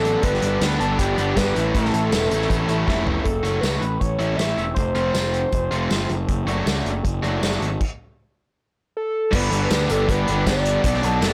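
A straight 4/4 pulse at 158 BPM drives this wistful, carefree indie rock excerpt in A mixolydian, with an up-front acoustic kit played with bundle sticks (dark cymbals, tight kick, snare, tambourine and toms) beside a fuzzy, overdriven picked bass and a raw, bright garage guitar riff that runs throughout. A gritty, screaming sawtooth synth lead with vibrato and analog delay carries the melody, joined at the start by a very quiet compressed second guitar riff and a soft, flute-like tonewheel organ with key click and slow rotary, and a drum fill at 2.9 s opens a middle passage through F#m, A, F and D/F# before a stop at 7.8 s. The blown-out recording sits in a small room with light reverb, and the lead returns just before the organ and second guitar come back at 9.3 s over a G chord.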